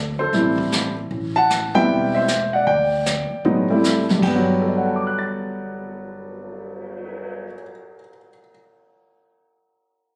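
Swinging eighths at 154 BPM in 4/4 drive this playful jazz piano trio fragment in G major, where an intimate, up-front concert grand with audible action noise, deep bass and plate reverb carries the melody from 0.2 s over a woody, growly pizzicato upright bass and a brushed drum kit with dark cymbals, a boomy kick, hi-hat, crash and cymbal swell, the harmony moving from D7sus4 through Am7 to Gmaj7 at 4.2 s, the trio captured on a phone in a moderate club reverb.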